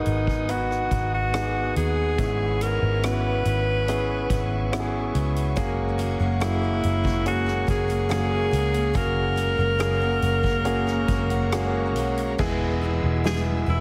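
A bright alto saxophone carries the melody from the first moment, singing in a pop style with light vibrato and scooped notes over a clear, intimate concert grand piano whose action noise and long sustain sit up front. This tender, hopeful pop ballad moves at 71 BPM in a straight 4/4, with a dark, round, foam-muted electric bass underneath from the start and a soft-mallet drum kit, its boomy kick and dark cymbals, joining almost at once. Behind them a reedy tonewheel organ holds sustained chords through a fast rotary speaker, its key click audible. At 5.6 seconds a full-bodied, jumbo steel-string acoustic guitar enters in the background with picked arpeggios trailed by delay, as the harmony moves from G#m7 through E6/G# to F#add9. An electronic downlifter appears at 12.4 seconds as the music settles on E, all set in light reverb and studio ambience with a heavily compressed, radio-ready sheen.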